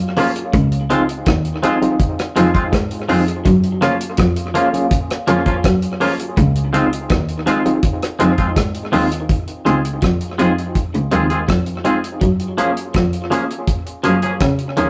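Lovers rock reggae with a tender, romantic mood, cut from a longer piece, where a clear bowed cello carries the bass with vibrato under a gritty, barky tine electric piano with tremolo and tape echo, compressed twangy guitar stabs up front, a lo-fi, slightly broken-up guitar riff with tape echo in the background, a dark, dry reggae drum kit of kick, hi-hat and rim click, and very quiet bright congas that drop out at 9.1 seconds, all in a rough rehearsal-room sound with tube saturation and moderate reverb.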